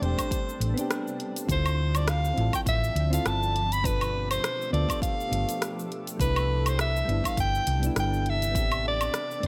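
This wistful, smooth excerpt of sunset chillout sits in a light reverb, with a clear soprano saxophone singing up front in a jazz style, its vibrato and soft attack carried on a touch of delay. Moving at 102 BPM in 4/4 with a gentle swing on the sixteenths, it stays in D dorian and drifts through Am11, Dm9, G9 and Cmaj9 before returning to Am11 at 8.6 seconds. Soft, mellow synth keys with a rounded, electric-piano-like tone and quick, decaying notes supply the accompaniment, thickened by chorus and delay. Behind them an ethereal pad holds sustained chords, slow to bloom and long to fade, with a granular, detuned shimmer an octave up, chorus, its own reverb and a faint vintage 12-bit grit. A hollow-body short-scale electric bass, dark and amped, sits prominently in the mix, while a deep house kit of cabasa, dark hi-hats, rim click and woodblock plays from the start, joined by a deep, layered electronic kick that enters at 0.2 seconds and stops at 8.7 seconds, both drum parts set in a small room ambience.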